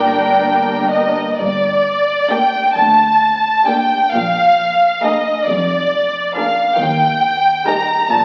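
Melancholic and elegiac, this short portion of a slow romantic movement for string orchestra unfolds in G minor at a rubato 6/8, with dotted quarters moving at roughly 39 to 46 beats per minute. Up front, a warm violin section carries the melody between D5 and Bb5 with smooth, even vibrato, while a second, more distant violin section sings an expressive inner line beneath it. A close, lush viola section fills in the accompaniment, and cellos and double basses sit in the background, the cellos smooth and even, the basses rich and focused, both bowed beneath a softened top. All five sections play from the start, and the harmony moves from Gm to Bb7 at 4.1 seconds and on to Eb at 6.8 seconds before the fragment breaks off at 8.2 seconds. The strings bloom in a generous scoring-stage reverb, heard through the crackle and patina of a very old 78 rpm record.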